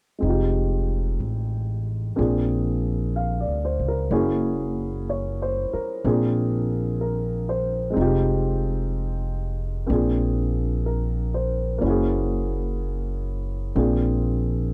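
Piano and upright bass enter together at 0.2 s, setting a late-night, romantic jazz mood at an unhurried, swinging pace in 4/4. The baby grand piano provides the accompaniment in a middle register, its tone open and warm, sitting up front in the sound. Beneath it, the plucked upright bass on gut strings adds a woody, dark, thumpy low end that sits just as close to the listener. The harmony cycles through Fm7, Bb7, Gb7 and Bb7, then repeats the same four-chord pattern, giving the passage a gently circling, moody quality. The recording is dry and close, in the manner of a 1970s studio session, and this short piece, cut from a longer performance, plays through to 14.7 s.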